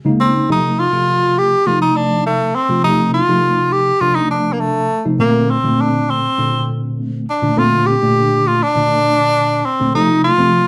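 Jazz at 102 BPM in a straight 4/4 F mixolydian, this soaring fragment cut from a longer piece features a worn, slightly out-of-tune tine electric piano, lightly overdriven with phaser and heard through its built-in speakers, comping over F7 and Bbmaj9 from the very start, while a bright tenor saxophone enters at 0.2 seconds up front with a vibrato-laden, scooped jazz solo carried by slapback echo, all set in a dark production with moderate studio reverb.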